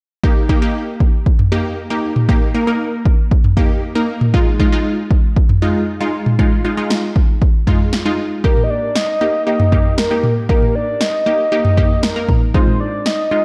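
Synth-pop at 117 BPM in a straight 4/4, this driving, cool fragment of a longer piece moves between Eb and Fm7 chords, tuned to A4 = 441 Hz. From 0.2 s a bright, detuned sawtooth unison pluck with a filter sweep and phaser carries the accompaniment over a punchy deep house drum kit of kick, snare and toms that sounds layered and up front. At 8.4 s a soft, round octave-layered lead with a sub octave, chorus and vibrato takes the melody, and the dark production sits in a lush hall reverb.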